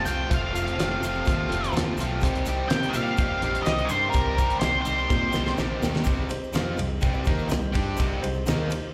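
A crunchy, double-tracked overdriven guitar sits up front with a picked riff and slapback echo, driving this swaggering classic rock clip at 125 BPM in C dorian as the chords move from F to Cm. A dark, fuzzy octave lead guitar carries the melody until 5.5 seconds, over a bright fingered bass, a dry 70s kit with a fat snare and tight kick that plays a fill from 5.1 to 6.1 seconds, a grainy shaker, and a clear, slightly worn grand piano in the background. The whole band sounds like a live club gig heard through the venue's PA, with light reverb.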